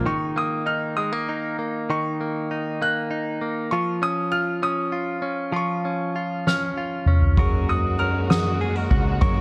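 Tender and heartfelt, this short six-eight pop ballad fragment opens on a twangy, compressed clean electric guitar up front, joined only in the first instant by fleeting touches of bass, strings and acoustic guitar, with a brilliant, polished grand piano carrying a high melody from 0.1 s. A soft-mallet drum kit with a boomy kick and fat snare enters with a fill at 6.5 s. At 7.4 s a round fretless bass, a lush, dark bowed string section and a full-bodied fingerpicked acoustic guitar with tape echo return, the strings and acoustic sitting in the background of a warm production with light reverb.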